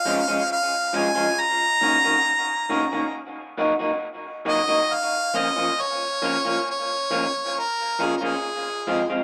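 A straight, unhurried reggae pulse in 4/4 carries this short, meditative cut from a longer piece, its hypnotic sway set at a slow, easy pace. A bright harmonica takes the melody from the very start, up front and present with a light vibrato and a pop-style solo voice that reaches into its upper register. Beneath it, an electric guitar through a small old amp supplies the accompaniment, its picked tone twangy, slightly broken-up and lo-fi, with a dub echo trailing behind it. The harmony drifts from Db/F through Ebm7 and Gb6 before settling on Bbm around 4.9 seconds and moving to Fm near the end. The band sounds as if playing live in one room, wrapped in a moderate studio reverb.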